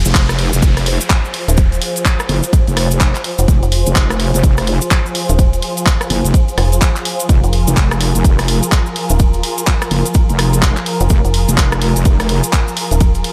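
A heavy, detuned wobble bass with chorus and sidechain pumping anchors this bouncy, gritty bass house excerpt in F minor at 126 BPM with a swung sixteenth feel, joined by a dark, metallic FM bass with tube saturation and pumping, while a punchy, tape-toned electronic kick and a house drum kit of handclaps, hi-hat, ride cymbal and rim click drive the groove, a grainy, close cabasa adds shimmer, a lush, bright symphonic string section holds low-pass-filtered, pumping chords on a single Fm, and a background downlifter sweeps through the first 3.5 seconds, all under light reverb.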